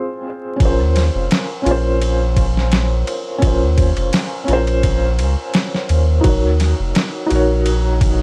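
Dry, gritty and flecked with vinyl crackle, this smoky, brooding trip hop excerpt opens on a muted, felt-dampened upright piano with tremolo, tape echo and audible action noise, before a deep, round dub sub bass and an overdriven, pitched-down boom bap sampler kit with a thumpy kick, snare and ride cymbal join at 0.6 seconds in a lightly swung groove moving from Bbmadd9 to Ebm7.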